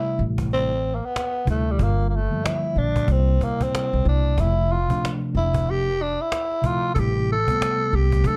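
Darkly produced with light reverb, this smoky, nocturnal jazz-hop clip swings as a raspy, breathy tenor saxophone with growling subtone and scooped notes leads up front, a mellow tine electric piano moves through Am7, Gm7, C7 and Fmaj7, a woody cajon with faint snares sounds in a live room, and a thumpy pizzicato upright bass holds the low end.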